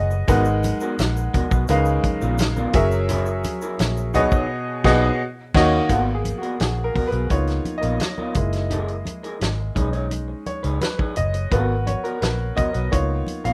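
Lush 1970s-style soul with a cinematic, silky mood, cut from a longer piece, where a brilliant grand piano with audible action noise opens on a fill and then takes a solo from 5.9 s over chords such as G#m9, C#13 and F#9. Up front beside it sit a round, foam-muted electric bass and a tight soul drum kit with a fat snare, punchy kick and dark cymbals, while an electric guitar through a small, slightly broken-up amp plays a picked riff, bright hard-hand congas and a grainy tube shaker sit in the background, and a very quiet, ringing vibraphone appears briefly at the very start and again at 6.6 s. The band hits an accent at 4.5 s, and the rough home-demo mix carries light reverb.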